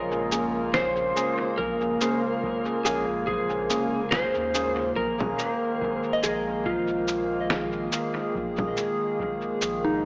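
Heard through a small speaker and bathed in a moderate concert-hall reverb, this meditative, spacious ambient dub fragment in Bb minor drifts at 71 BPM with a light sixteenth-note swing, moving from Bbm7 to Ebsus4/Bb. An up-front, slightly broken-up electric slide guitar carries the melody through dub echo until 7.9 s, over a warbling, detuned, nostalgic pad with chorus, a round sine sub bass, and gritty, barky overdriven tine electric piano stabs with phaser and echo that drop out at 4.8 s. Muffled, pitched-down sampler-style cabasa, fat snare and congas ride the echo above a dry, deep electronic kick in the background, while a soft, pure FM synth bell adds chorused, phased arpeggios from 6.1 s.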